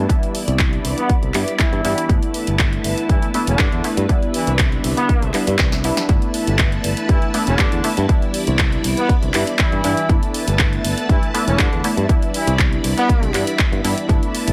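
Sunny and feel-good, this dry filtered disco house excerpt sets a punchy electronic kick up front beside a house kit of handclaps, pumping hi-hat and snare, with a growly fingered electric bass, a detuned sawtooth polysynth comp and lush string-machine chords that pump and sit behind a low-pass filter, while a distant horn section with vibrato, 12-bit grit and tape echo carries the melody from 1.0 s over alternating Cmaj9 and G69 chords, and a drum fill at 5.6 s leads into the drop at 6.1 s.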